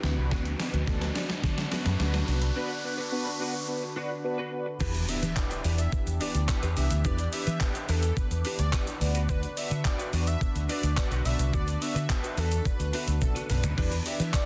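Dance-pop in E minor at 107 BPM, this confident, driving excerpt opens with a build-up where a gated 80s drum machine with a thumpy kick, overdriven gated-reverb snare, claps, toms and shaker fills beneath a riser, round dark muted bass, mellow detuned synth brass, a clean direct-recorded guitar riff in the background and an evolving, resonant sawtooth pad with chorus, phaser and sidechain pumping. At 4.8 s the drop lands with an impact that rings until 7.0 s, and an airy, dreamy sine lead with vibrato, portamento and tape echo takes the melody over chords moving between Bm and Em7. The mix is dense and heavily limited, with the drums and punchy bass up front and little reverb.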